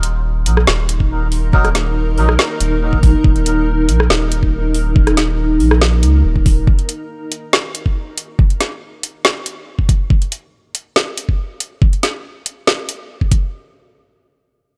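Light reverb gives this deep dubstep fragment a cavernous, meditative atmosphere, with the drums and bass placed up front. A half-time groove in 4/4 comes from a garage drum kit with a woody snare, rim click and metallic hats, joined by a knocking electronic kick; both kits sound layered and were re-recorded in a small room. Beneath them, a soft dub sub bass rounds out the low end with a deep, mellow tone that blends triangle and square waves. A granular cloud pad holds sustained chords in a blurred, evolving haze, with its own built-in reverb, while a reedy, breathy melodica stab flickers through dub echo at 1.5 s. The pad and sub bass drop away at 6.7 s, leaving the drums to carry on alone until 13.4 s.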